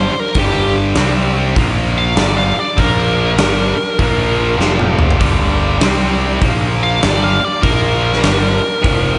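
Swinging at 99 BPM in 4/4 with a brooding, gritty G minor groove, this blues rock and southern rock power-trio excerpt pairs a warm, distorted bluesy lead guitar soloing over a double-tracked, overdriven riff guitar with slapback echo, a growly fuzz bass, and a huge arena drum kit with punchy kick that drops a fill at 4.6 seconds, before a very quiet, shouting tonewheel organ with key click and slow rotary speaker slips in sustained chords from 5.2 seconds, all set in a lush hall reverb.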